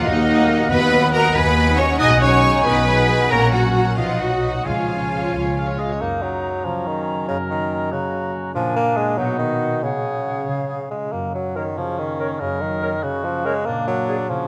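A straight 6/8 pulse at 93 BPM drives this dramatic, stormy romantic orchestral excerpt in F# major: an up-front cello section and intense double basses carry the bass beneath a focused violin melody, a second lush violin line and close violas until the strings fall away near 6.0 s. Meanwhile a mellow, distant clarinet, an airy silver flute, a warm oboe, a clear bassoon, background French horn chords and a ringing fingerpicked harp continue on in a moderate concert hall reverb. The clarinet and flute stop near 14.2 s, and the rest carry through to 14.5 s.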